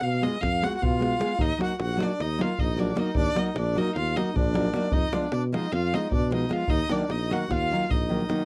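A dry, close 1970s-style studio sound with light reverb frames this cut from a longer Balkan wedding-band piece. It is in a straight 9/8 at 305 BPM (eighths) and moves between Fdim and Ebm in Eb harmonic minor, with a bittersweet, restless mood. A distant, bowed violin carries the melody with smooth vibrato over a mellow, classical-style tuba bass with its own vibrato and a deep, close davul. A bright, full-bodied nylon-string guitar fingerpicks its accompaniment from 0.2 s with audible finger squeak, and a reedy single-reed accordion, close-miked with dry tuning, adds a second line from 0.6 s.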